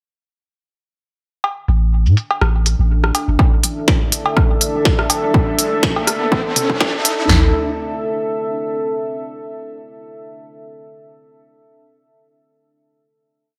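Cool and sparse, this short minimal techno piece moves at 123 BPM in A minor with a light swing on the sixteenths, opening on an Asus4 chord and settling onto A minor for its final chord at 7.3 seconds. A booming analog drum machine starts things at 1.4 seconds with cowbell, rim clicks and mid toms in cross rhythm, soaked in dub echo while a filter sweeps across it through the intro. A punchy sub bass with a pitch-drop attack and a dotted rhythm joins at 1.7 seconds alongside a minimal click drum kit of cabasa, clicky filtered hats and a tiny snare on the backbeat. A deep, dark ambient pad of sawtooth and sine layers with a sub octave fades in slowly, its chorus and built-in reverb shaping moody, slowly shifting chords that pump against the sidechain. From 3.4 seconds a punchy analog drum machine drives a four-on-the-floor kick with snare and floor tom, re-recorded in a large room, as a filter sweep and, from 5.2 seconds, a riser push the build toward the closing chord. 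The tape-warm drum machines sit in small room ambience, with light reverb and a high-pass filter over the whole mix.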